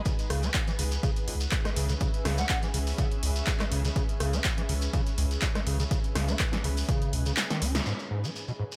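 Raw and driving, this acid house excerpt runs at 123 BPM in 4/4 with a light sixteenth-note swing, built on a squelchy, gritty overdriven acid bass riff with resonant filter sweeps, distortion, tube saturation, chorus and tape echo over a round sine sub bass and a cloudy, evolving granular pad, both pumping to the sidechain, moving from C#m7 to G#m. An up-front electronic kick and a punchy, overdriven analog drum machine with handclaps, hi-hat, rim click and snare drive the groove alongside a grainy, distant shekere. A brief airy flute note with delay floats in the background at 2.4 seconds, and near the end the kick drops out for a drum fill from 7.4 seconds, capped by a band accent at 7.7 seconds.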